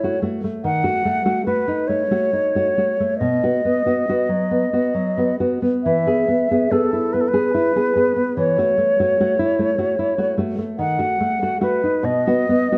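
In a slow, rubato 6/8 that drifts between 44 and 51 BPM in dotted quarters, this romantic E major duet unfolds lyrically, the nylon-string guitar supplying a deep, thumb-plucked classical accompaniment beneath the silver concert flute's airy, tongued melody with its vibrato. Both instruments sit up front throughout the 12.8 seconds, moving through F#m7, D#m7b5, B, E, F#m7/E and D#dim before settling on B. A moderate recital-hall reverb and a dark, warm production wrap this fragment, clearly cut from a longer piece, in a warm glow.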